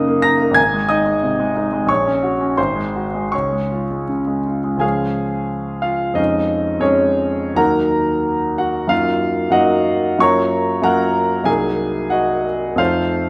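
Classical romantic character piece for solo piano in Db major, bittersweet and passionate, moving in a flexible rubato 2/4 between 76 and 97 BPM. The concert grand sits up front with a clear, intimate tone, deep bass, long sustain and audible action noise, spanning Ab1 to Bb6 inside a wet recital hall reverb. After an opening phrase that settles on Db at 3.3 seconds, a second section from 4.8 seconds drifts through Eb minor and Gbmaj7 harmonies before this fragment of a longer piece breaks off on an F7 chord at 12.8 seconds.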